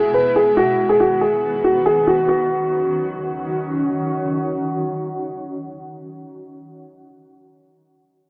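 The recording has a small-speaker sound, set in a light studio reverb, and this short cut from a longer piece is tuned to A4 = 444 Hz. It is an ominous, tense hip hop track at 140 BPM in 4/4 with a half-time feel, in Eb phrygian. A dark concert grand piano sits up front with a mellow, boxy tone and deep bass, playing a melody between F#4 and B4 through a low-pass filter and tape echo until 3.5 seconds. Alongside it, also up front, a granular cloud pad holds sustained chords from B2 to F#4, its blurred, sine-like texture evolving with a slow attack, long release and its own reverb and low-pass filter, lasting until 6.2 seconds. A filter sweep runs through the opening passage, and at 2.3 seconds the harmony moves from E and B to Ebm7 as a new section begins.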